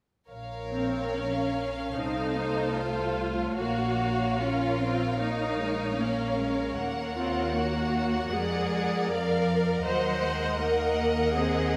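Opening at 0.3 s with a distant, lush symphonic violin section singing the melody over a focused chamber violin second line and smooth, rich double basses, this solemn, melancholic slow romantic movement for string orchestra in Bb minor drifts in a rubato 4/4 at 71-82 BPM, as intense violas with a velvety top join the accompaniment at 0.7 s and lightly vibrato cellos add a clear second bass line from 2.0 s, all moving through darkly shaded minor and dominant-seventh harmonies in the generous reverb of a recital hall, cut from a longer piece.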